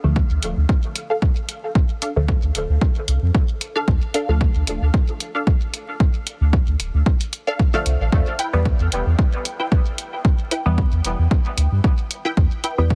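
Hazy and meditative, this dub techno excerpt in D dorian moves at 113 BPM with a lightly swung 16th feel, its chords shifting from Dm to Em at 8.1 seconds. A muted, detuned sawtooth-and-square chord riff carries phaser, ensemble chorus, sidechain pumping and dub echo, while a lower, wave-folded stab part with a bright filter pluck drops out between 4.5 and 7.7 seconds. Underneath, a round sine sub bass pumps alongside a punchy, up-front analog kick, an echoing analog hi-hat ticks along, and the dry mix has a heavily compressed radio sound dusted with vinyl crackle.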